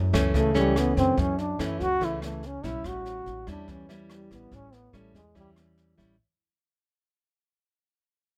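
A warm, up-front trombone carries the melody in this short bossa nova cut, soloing in a jazz style with vibrato and scooped notes from 0.4 seconds over a change from F#m7 to A7. Fingerpicked nylon-string guitar sits close by with small, warm accompaniment, while woody pizzicato upright bass and an airy, polished brushed kit with boomy kick, rim click and snare hold a straight 4/4 feel. The mood is sunny and sophisticated, set in light reverb, and the passage fades out across its whole length.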